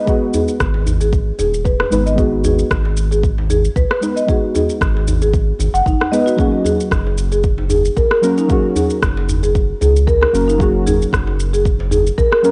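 A dark, detuned chord stab with chorus, delay and sidechain pumping opens this meditative, mystical organic downtempo excerpt in G# minor at 114 BPM, alongside woody marimba arpeggios that carry delay and a filter sweep, over a lightly swung 16th-note groove moving from G#m7 to F# at 6.4 seconds. A deep, tape-warm electronic kick, a layered shaker and rim click, and a hard-handed djembe with a live room sound enter almost at once, with a round, nasal analog bass joining at 0.6 seconds, up front and pumping. A light digital ambience surrounds the mix, and the whole recording has a worn, warbling cassette character with dulled highs and drifting pitch.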